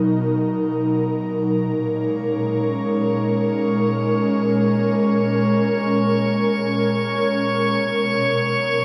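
Floating in free time, this peaceful, serene ambient passage is cut from a longer piece and tuned slightly sharp at A4 = 441 Hz. An airy, breathy pad with a detuned, chorused sound holds sustained chords from the start, moving from G#m9/B to A#m7 at 1.5 seconds and settling on Bmaj7sus2 near the close. At 2.3 seconds a glassy texture of drifting overtones, carrying its own reverb, joins above it, and the whole sits in a vast, echoing cathedral space with a cassette-tape character.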